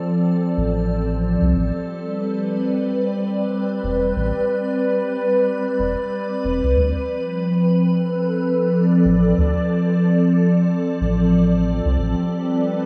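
A dark, organ-like pad leads this hazy, meditative ambient dub excerpt, holding slow-blooming, detuned chords that shift between Dm7 and Am11 under an ensemble chorus, a built-in reverb and a moving notch that keeps its pure tone evolving. From 0.6 seconds, a deep, round sub bass sits up front beneath it, mellow and sustained, in a gently swung 4/4 feel. The whole piece floats in a huge, wet reverb over a small-room ambience.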